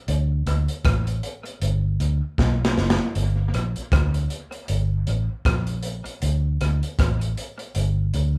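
Warm and sunny, this short roots reggae excerpt sits in an easy 4/4 groove with a gentle swing on the sixteenths. A vintage muted electric bass, played with the fingers, carries the low end between F#1 and D2, its tone dark, round and punchy with a foam-muted, amped character placed up front. Alongside it, a crunchy breakbeat drum kit of hi-hat, kick drum, rim click and snare drum brings a gritty, saturated texture, with a tight kick, a medium-tuned snare and a rolled-off top that keeps it smooth. Dub echo trails off the drums, and a short drum fill arrives between 2.4 and 3.1 seconds. The pair plays as a band live in one room, with a light reverb wrapping the sound.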